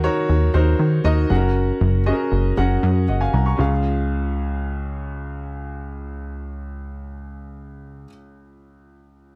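The sound is dense and heavily limited in a modern way, with light reverb and a small-room ambience around two up-front parts. This short pop fragment in Db major moves at 118 BPM in a straight 4/4, with an anthemic, warm mood. A clear upright piano carries the accompaniment across a broad span from Db2 to Db6, its woody, boxy tone and audible action noise giving it an intimate, close feel. Beneath it, a plucky analog bass built from sawtooth, pulse and triangle waves with ring modulation brings a punchy, funky edge; its fast attack and decaying filter pluck keep the timbre evolving. The harmony passes from Ebm to Gb and then settles on Db at 3.6 s. The bass drops out at 8.1 s, leaving the piano alone until it stops at 9.4 s.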